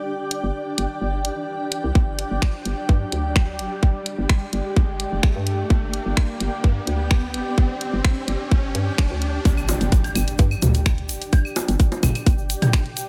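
A straight 4/4 pulse at 128 BPM drives this hypnotic, sparse minimal techno excerpt, cut from a longer piece. A cloudy, detuned granular pad and a hollow, bouncy FM bass both pump to the sidechain from the opening, joined by an overdriven garage kit of finger snaps and hi-hat and an electronic riser that builds toward the drop. The tight, overdriven electronic kick enters up front at 2.0 seconds, punching alongside the knocking bass while the evolving pad spans D4 to G5 with its own blurred reverb. At 9.5 seconds an impact marks the drop, where tape-tinged electronic claves, bongos and toms, re-recorded in a large room, enter with a grainy, bright egg shaker tucked in the background. A light reverb sits over the mix, and the pad, garage kit and shaker carry on to the end at 13.1 seconds.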